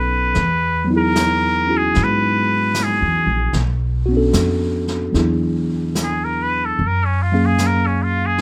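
Close, detailed and nearly dry, this wistful, melancholic jazz ballad excerpt at 75 BPM with a swung 4/4 feel features a bright, nasal trumpet with straight mute playing an up-front solo melody with scooped notes, over a worn, slightly out-of-tune tine electric piano moving through Emaj9, Bm7, E9 and Gbmaj9, a woody, thumpy pizzicato upright bass, and a vintage brush kit with a rolled-off top that enters at 0.3 seconds on brushed snare and hi-hat.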